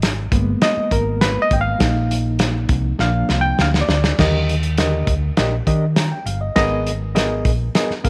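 A straight, uptempo 4/4 groove drives this joyful excerpt of 1960s-style soul, with a snug small-room drum kit of fat snare, tight kick, hi-hat and dark crash cymbal sitting up front alongside a round, dark hollow-body electric bass. From 0.3 seconds a barky, reedy electric piano, lightly overdriven and pulsing with fast tremolo, takes a solo over chords moving from Abmadd9 through Bbsus4 to Bb, while the drums play a fill from 3.0 seconds. At 4.2 seconds the band settles onto Ebmaj7 before returning to Abmadd9, all within a light studio reverb.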